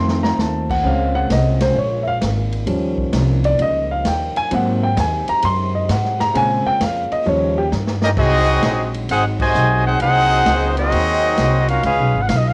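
Energetic and swinging, this big band swing excerpt at 131 BPM opens with a dark, mellow concert grand piano solo with audible action noise and a cassette-tape character, backed by a woody, thumpy pizzicato upright bass on gut strings, a swinging drum kit with a punchy kick and medium-tuned snare, and a very quiet cup-muted trombone section holding soft sustained chords, until a bright, tight trumpet section with light vibrato takes the melody at 8.0 s over a veiled, bucket-muted trombone second line, with a band accent at 9.3 s and a moderate spring reverb in a small room.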